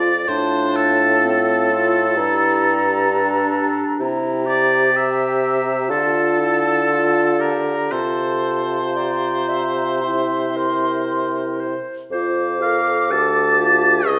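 Lyrical and warm, this slow romantic movement for wind quintet unfolds with a rubato feel and is cut from a longer piece. A mellow silver concert flute carries the melody from 0.3 s, its airy, metallic tone shaped by vibrato, soft attacks and expressive phrasing. A clear oboe sings the second line up front with vibrato and a vintage classical character. Beneath it, a close-miked clarinet and a French horn with light vibrato supply the accompaniment, the horn sitting in the background. A present bassoon with vibrato holds the bass, and the harmony moves from F/A through Gm, C7 and Dm to settle on F, wrapped in a wet recital hall reverb.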